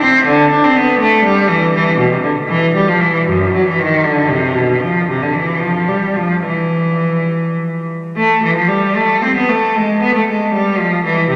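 Solemn and grave, this short passage cut from a longer baroque-style suite movement features a single bowed cello playing alone in 6/8 with a free, rubato feel. The cello's tone is clear, smooth and even, shaded with vibrato, and it sits up front while a long, wet cathedral reverb surrounds it, lending the 11.4 seconds a spacious, distant glow.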